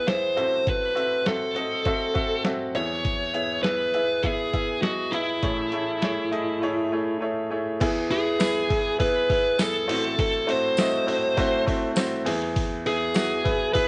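Anthemic and warm, this short piano-driven pop excerpt pairs a dark, overdriven electric lead guitar singing the melody up front with a bright, woody upright piano, over a muffled, pitched-down sampler-style drum kit with a thumpy kick, while a jingly, close tambourine joins at 8.4 seconds, all set in light digital ambience.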